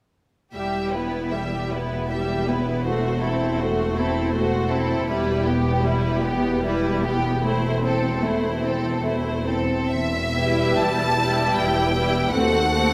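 A recital-hall reverb wraps this short excerpt of a slow, romantic E minor movement for string orchestra in a yearning, elegiac glow, moving in a rubato 3/4 at roughly 65-82 BPM. A clear, intense violin section sings the melody with vibrato over a smooth-topped second violin line and focused violas. Cellos sit softly in the background above a rich, even double bass section, as the harmony circles E minor before closing on a D#dim7 at 12.3 seconds.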